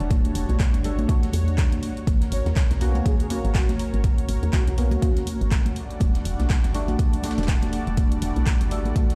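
Hypnotic, moody deep house at 122 BPM with a swung 16th feel, where an up-front deep electronic kick sits with a round, woody FM bass with tube saturation that pumps beneath a smooth detuned analog pad with chorus and tremolo, a warbling lo-fi tape-like pad, and mellow ring-modulated chord stabs with delay, while a deep house kit with handclaps and hi-hat, a very quiet gritty sampler-style kit, and bright, dry congas fill out the groove, and a breathy flute-like lead with vibrato drifts in from 2.3 to 5.3 seconds over chords moving from Em11 to G#m11 and back.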